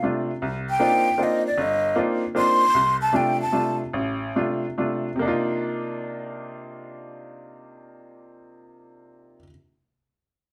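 An intense, hypnotic jazz waltz opens with a breathy, hollow flute and a woody upright piano sounding together in a swung three-beat feel. The flute carries the melody up front with a straight, tongued tone, while the brilliant piano accompanies close by, its action noise audible, over a Cm11 chord that moves to Dm/C. The pace slows partway through the flute's lead, which stops at 3.8 seconds. A new section arrives at 5.2 seconds as the harmony returns to Cm11, and the piano carries on alone until 9.5 seconds. Moderate studio reverb and the feel of a band playing live in one room frame this fragment, cut from a longer piece.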